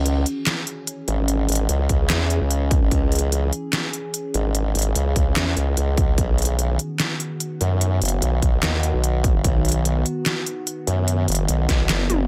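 An excerpt of aggressive, heavy wobble dubstep opens with an evolving wavetable pad and a formant-sweep wobble bass sounding together from the start, in a half-time feel. The pad holds morphing, sustained chords through a slow attack and long release, its unison triangle tone colored by chorus, phaser, built-in reverb and sidechain pumping, and it sits back in the mix. Up front, the wobble bass blends sawtooth and sine through a formant filter, its compressed, overdriven growl thickened by chorus. A dubstep drum kit of handclaps, crisp hats, deep snare and toms joins almost at once, and a punchy, layered electronic kick drum with tape coloring arrives at 1.9 seconds. The harmony moves from C#m to B, the room stays dry, and a drum fill lands at 12.1 seconds just before the cut.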